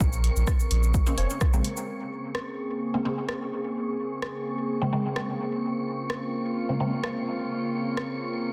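This nocturnal, hypnotic dub techno fragment opens with a warbling, lo-fi pad holding a minor ninth chord, its detuned sawtooth and triangle tones softened by chorus and its own reverb, pumping gently against a punchy, up-front electronic kick. A round, sine-like sub bass sits beneath the kick, and both drop away by about 1.6 seconds. Meanwhile a deep house kit of cabasa, dark hi-hats and rim clicks runs throughout, with dub echo trailing off it and soft clipping on the snare. Muted, wave-folded chord stabs with a resonant filter pluck and phaser enter at 1.1 seconds. A fainter, shadowy stab figure flickers briefly higher up, and from 1.9 seconds a filter sweep moves across the stabs. Over it all hovers a breathy, wind-like tuned noise layer, and a lush hall reverb wraps the dense, heavily limited mix.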